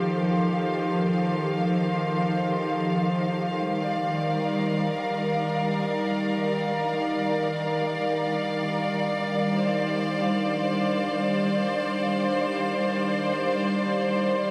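A bright symphonic string section sits up front, holding intense, bowed ensemble chords with light vibrato that move from F7 to Ebmaj9 at 3.6 seconds in this spacious, melancholic ambient passage in free time, tuned to A4 = 445 Hz. A glassy, ethereal glass harmonica beats softly in the background for the opening 3.7 seconds. At 7.5 seconds a vintage analog drone fades in beneath, warbling and detuned with chorus, all set within a huge, wet reverb that evokes a vast, echoing space.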